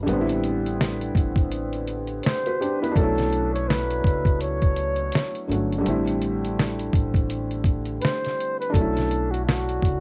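A relaxed 83 BPM groove in 4/4 with a lazy swing on the sixteenths sets up this hazy, nostalgic lo-fi hip hop excerpt, cut from a longer piece. The sampler-style drum kit sits up front, pitched down, compressed and muffled with a cassette-tape tint, its thumpy kick and fat snare joined by hi-hat. A felt-muted upright piano plays soft, intimate accompaniment through a low-pass filter and cassette coloring, its thin felt and audible action noise close to the ear, while a woody pizzicato upright bass with steel strings holds the low end. From 2.2 seconds a breathy flugelhorn carries the melody, whispered and mellow with light vibrato, a soft attack and a smooth, filtered top. The harmony drifts between Am11, Bm11 and Am7, all wrapped in light reverb and the homespun grain of a cassette home recording.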